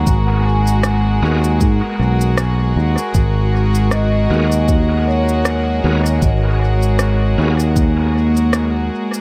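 A rich chamber string section opens the clip with sustained, reedy gut-string chords, joined at once by a mellow vibraphone whose soft-mallet arpeggios ring in the background with fast motor vibrato, a grainy 12-bit sampler grit and tape echo. This spacious, meditative slice of ambient dub moves at 78 BPM in 4/4 with a swung sixteenth-note feel, resting on a single G#m9 chord in G# minor. An overdriven fingered electric bass sits up front with a growly, amped tone, while a deep, tape-warm electronic kick and a produced electronic cabasa and rim click carry the beat, the latter trailing dub echo in a small room. From 1.2 s a bright, shouting tonewheel organ adds lightly overdriven stabs in the background, spun through a fast rotary speaker with chorus vibrato and dub echo, until 7.6 s. The echo-heavy mix carries light reverb, and the piece is cut from a longer work, ending at 9.2 s.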